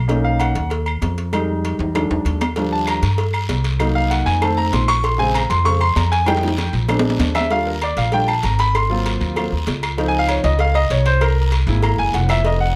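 A woody, thumpy pizzicato upright bass on gut strings opens this driving, sophisticated Afro-Cuban jazz excerpt, joined at once by a natural, up-front grand piano soloing over jazzy chords, ringing metal-shell agogo bells and timbales, and round, low-tuned cowbell and bongos struck with hard hands, with saturated claves entering moments later in the background, drum fills at 1.8 and 6.3 seconds, a raspy guiro arriving at 2.6 seconds, and the whole captured by close, detailed microphones with light reverb.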